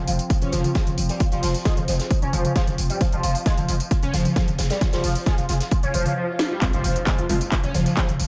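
A straight 4/4 pulse at 133 BPM drives this intense, industrial stretch of peak-time techno in F minor, cut from a longer piece. An overdriven electronic kick sits up front, layered with a techno kit of cracking snare, smooth hats, handclaps, tambourine and toms, while a distant, roomy acoustic kit with hi-hat and snare lurks in the background. A growling, buzzy 808-style bass holds F1 under a screaming, guitar-like synth lead riff between F3 and Db4, its saturated tone colored by phaser, chorus, dub echo and sidechain pumping. A mellow analog drone evolves alongside them until 6.2 seconds. A very quiet electronic swell enters at 5.9 seconds ahead of a drum fill, and at 6.6 seconds the drop lands with an impact and a brief aggressive, detuned rave stab carrying 12-bit sampler grit, all set in an echo-heavy mix with light reverb and a digital ambience.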